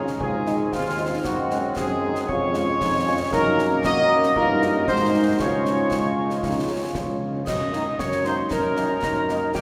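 A festive, spirited military-style march for wind band in 2/4 at 116 BPM opens with brass and woodwinds together: a distant, roomy trumpet section carries the melody with light vibrato, alongside a mellow woodwind section and a clear euphonium on second lines, punchy French horns with a smooth top, tight vintage-toned trombone chords and a warm tuba bass. From 0.2 s a pure, tongued wooden piccolo adds a high second line, while concert snare, bass drum and dark clash cymbals sound close and dry. The ensemble plays in a church or concert hall with long cathedral reverb, moving from Ab toward Db before a new section begins at 7.5 s in this short cut from a longer piece.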